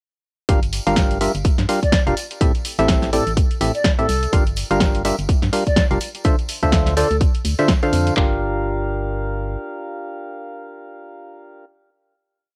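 A percussive, organ-like stab sits up front in this energetic, soulful piano house piece at 125 BPM, playing dark dotted-rhythm chords with chorus, sidechain pumping and a cassette tape tint over a swung 4/4 groove in G dorian. Beneath it, an FM bass with a hollow, fast-attack, decaying tone pumps through a syncopated riff, while a layered house kit drives a punchy four-on-the-floor kick and handclaps from 0.5 seconds. A tape-softened analog drum machine adds programmed hats and a punchy backbeat snare, and a tambourine sits distant in the background. From 1.8 seconds a mellow, close-miked silver concert flute enters with pure, tongued short answering phrases, its vibrato trailing into tape echo. The chords move from Gm7 through Am7 and Dm9, and at 8.2 seconds the drop gives way to a final Gm7 chord on which the organ stab rings out longest, all within a light reverb and the lo-fi sheen of a home cassette recording.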